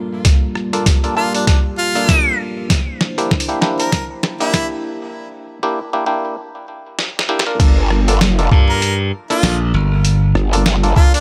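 A dark, detuned analog pad holding Gm9 and C9 chords pumps beneath percussive, phased clav stabs as this gritty, swaggering glitch hop cut at 98 BPM in G dorian swings through a filter-swept build-up, with pitched-down, tape-warm sampler drums and a thumpy electronic kick up front, a jazz-style harmonica with vibrato and scooped notes carrying the melody, and a break at 5.1 seconds giving way at 7.6 seconds to a drop where a growling, wobbling bass and a bright, punchy slap bass join in.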